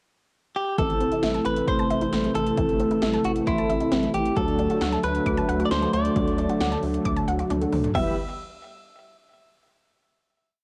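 Synth-pop with a melancholic yet driving mood: a clean, direct-recorded electric guitar carries a hook-based melody up front, dressed in spring reverb and tape echo, while mellow synth brass holds chorused triads over a bold, airy analog pad. A squelchy, resonant blip pluck runs sixteenth-note arpeggios through phaser and tape echo, a rubbery square bass pulses in eighths, and overdriven 80s electronic drums hit with a punchy kick, gated snare and toms, and metallic hats. After a short pickup, the band enters at 0.8 seconds for a pre-chorus moving from Am to D, a drum fill at 7.5 seconds leads into a closing Em chord, and a cassette-tape haze and moderate booth ambience give the whole piece a homemade feel.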